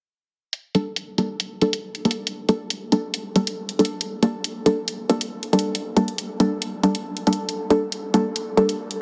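A muted, detuned sawtooth chord stab sits up front from 0.7 s, its dark, plucky filtered tone colored by chorus and dub echo and shaped by a filter sweep as it rings out on a G minor add9 chord. Underneath, a layered electronic hi-hat with a low-pass filter and small-room ambience carries the half-time 4/4 pulse at 138 BPM from 0.5 s. This brooding, meditative deep dubstep excerpt in G minor is washed in a huge ambient reverb and squeezed into a heavily compressed, radio-like sound.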